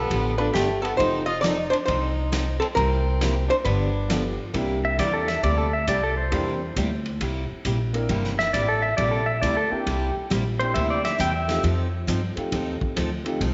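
A swung 4/4 groove drives this cheerful, playful western swing excerpt, carried from the first moments by a woody, thumpy pizzicato upright bass sitting up front and a vintage drum kit with a punchy kick, medium-tuned snare, hi-hat, ride and dark cymbals. A bright, full-bodied picked steel-string acoustic guitar fills in the accompaniment alongside an upright piano with a natural, woody tone that drops out briefly and returns at 4.1 seconds. At the opening, a clean, hollow-body archtop guitar carries the melody while a rich, smoothly bowed fiddle with light vibrato plays a second line beneath it, both finishing around 4.3 seconds. A twangy pedal steel guitar, played with fingerpicks and using volume swells and slide, then enters at 4.8 seconds as a solo voice up front. The mix is bathed in a wet echo-chamber reverb with small-room ambience and a rolled-off, vintage top end, and the chords move through rich ninth and seventh harmonies.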